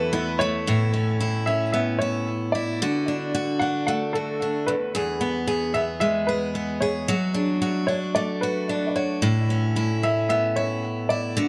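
A picked steel-string acoustic guitar, a clear upright piano and a very quiet open-back banjo all begin together at the start of this heartfelt, easy-going acoustic pop excerpt, which is cut from a longer piece. The banjo's twangy, plunky fingerpicked arpeggios drop away by 1.2 seconds, leaving the guitar to carry the accompaniment with a bright, up-front tone, complete with audible finger squeaks. Above it, the piano plays the melody in a woody, polished voice that sits a little further back than the guitar. Both guitar and piano are treated with analog delay, and the echo-heavy mix is dressed in light reverb, giving the track a gently spacious feel. The chords move from Esus4 into Aadd9, then through D, E and D/F# before returning to Aadd9 near 9.2 seconds.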